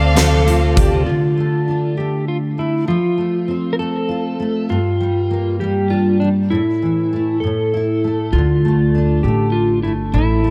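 A dark, clean slide lap steel, treated with digital delay and played with volume swells, carries the aching melody of this melancholic six-eight pop ballad excerpt over a double-tracked, full-bodied fingerpicked steel-string acoustic guitar, while a lush bowed violin section, a flute-like tonewheel organ with slow rotary and chorus vibrato, a bright, twangy twelve-string electric guitar, an arena drum kit with a punchy kick and a fat snare, and a woody pizzicato upright bass sound together only in the opening second, with the bass returning at 8.3 s, all in light reverb and small-room ambience.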